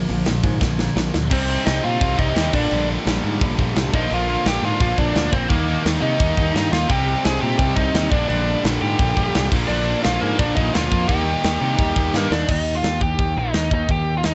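A straight 4/4 pulse at 172 BPM drives this urgent, aggressive punk rock clip, cut from a longer piece and moving through Bb, Cm, Gm/Bb and Eb. A tight metal drum kit with bright cymbals and a medium-tuned snare plays fills at 0.6 s and 12.1 s, while a punchy, fuzzy picked bass sits up front beneath three background guitar riffs: one distorted and one overdriven electric guitar and a double-tracked, high-gain one, all ending at 12.5 s. From 1.3 s a biting lead guitar carries the melody up front with overdrive and digital delay, all in a lightly reverberant room with a dull top end.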